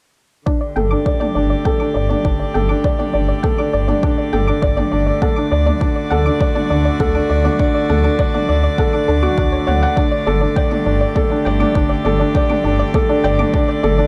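Tender and hopeful, this short piano-and-strings electronica passage sets an up-front riff on a mellow, intimate felt-muted upright piano, treated with delay and a filter sweep, against sustained chords from a distant, floating string quartet bowed sul tasto. A soft, round pluck plays arpeggios in the background through chorus, delay and sidechain pumping, while a dark, detuned saw bass rumbles beneath with its own pumping from 0.8 seconds. A deep, layered electronic kick sits up front in a fairly dry mix, with tape-warmed electronic toms set back in the background.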